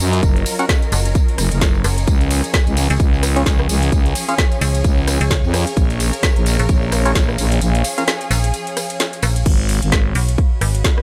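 Bass house at 130 BPM in 4/4 with a swung sixteenth feel, gritty and aggressive, taken from a longer piece and sitting in a drop from the start. Two up-front FM basses drive it: a thick, growling one with tube saturation and a fast-attack, decaying metallic one entering at 0.9 s, both pumping against the punchy, layered electronic kick. An overdriven garage kit adds a woody snare, metallic hats, rim clicks, ride and crash, while a jingly acoustic tambourine sits close but low in the mix. In the background, a lush, bowed string section holds low-pass filtered chords, an ethereal, detuned pad shimmers with chorus, phaser and reverb, and a hollow, wave-folded organ stab adds mellow hits with delay. The chords move from F# to C# to A#m, and the kick drops out from 7.6 s until a return at 9.5 s as the harmony shifts to G#m, all set in a digital ambience.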